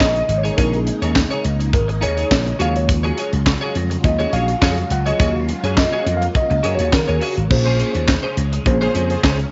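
Slick and funky, this short cut from a longer early-eighties boogie funk track rides a straight, even groove. A tight funk drum kit, up front with a high-tuned snare, handclaps, hi-hat and crash, pairs with a bright, growly vintage slap bass that sits just as close. A mellow tine electric piano, clean and heard through its built-in speakers, takes the solo spot until 7.5 seconds, while a slightly broken-up, compressed electric guitar plays a picked riff with ensemble chorus. Behind them, a swirling, vintage string machine holds sawtooth chords through a phaser and ensemble chorus, moving from Bbm11 to Ebm11 and then Bbm9. Just before the end, at 8.8 seconds, a fat, nasal analog synth brass line with chorus and vibrato briefly appears in the background, all set in light reverb and small-room ambience.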